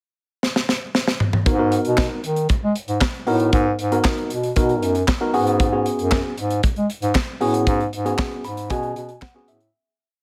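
Late-night and slick, this short early-eighties boogie funk piece moves at 116 BPM in G# minor. A modern studio drum kit opens with a fill across the pickup bar, then settles into a polished, airy four-on-the-floor boogie beat with a punchy kick, a high-tuned snare layered with handclaps, hi-hat and toms, all in a small acoustic room. At 1.5 seconds the verse begins: a mellow bass clarinet plays a fat, syncopated boogie bass line, classical in style and dotted with muted ghost notes and chromatic approach notes. A worn, slightly out-of-tune tine electric piano, lightly overdriven through its built-in speakers, joins with syncopated rootless chord stabs over G#m9, then F#sus4. The recording fades out from 7.7 seconds while the piano adds a short fill, with light reverb giving the close-up parts a touch of space.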